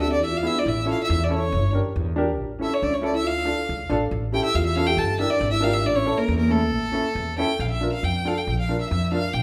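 This short klezmer excerpt opens with four players at once: a bowed solo violin on the melody, a folk marimba played with soft mallets on a second line, an upright piano in accompaniment, and a plucked upright bass. The mood is festive yet soulful, in a straight 2/4 feel, with the harmony starting on E7 and then circling between A, Gm and Dm. The violin sits up front with a focused, vibrato-rich tone that also sounds slightly distant, while the pizzicato bass on gut strings is thumpy and just as forward. The close-miked marimba is dry, round and rustic on its hardwood bars, and the worn, slightly detuned piano rings with long sustain. The marimba drops out at 7.3 seconds, a new section arrives on a Bb chord at 7.6 seconds, the piano stops at 9.2 seconds, and the violin and bass carry on to the cut at 9.4 seconds, all set in a wet recital hall reverb.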